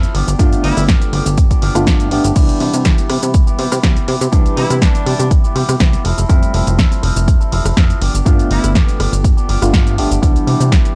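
Filtered disco house in C major at 122 BPM, this short, joyful, sunny clip rides a lightly swung 4/4 groove and is cut from a longer piece. A dry analog drum machine supplies crash, hi-hat, rim click, shaker and a punchy snare from the start, with its hats, percussion and cymbals pumping, and a punchy, overdriven electronic kick joins up front from 0.4 seconds. A plucky, wave-folded analog bass with a fast, decaying filter pluck carries the funky low end, while a bright, twangy electric guitar picks a compressed riff through an envelope filter. A mellow, stringy clav adds phased accompaniment, and a vintage horn section with light vibrato drops in for brief jazz-style phrases near 0.6, 4.6 and 8.5 seconds. The harmony moves from G7 to Cmaj7, Fmaj7 and back through G7 to Cmaj7, all captured with a gritty hardware, cassette-tape character and digital ambience.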